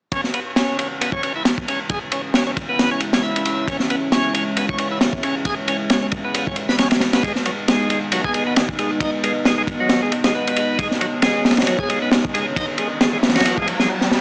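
A crunchy breakbeat drum kit leads this funky, raw breakbeat excerpt at 135 BPM with a swung sixteenth feel, its punchy kick, high-tuned snare and dark ride cymbal sitting up front with gritty saturation and a rolled-off top. A bright, shouting tonewheel organ riff with key click, light overdrive, slow rotary speaker and analog delay rides over a deep, moody analog pad of detuned sawtooth chords with chorus, sampler grit and sidechain pumping, moving from C#m to G#m at 7.2 seconds. An electronic riser enters in the background at 12.2 seconds ahead of a drum fill at 14.0 seconds, and the whole piece has the dry, lo-fi character of a hardware recording on cassette tape, with light reverb.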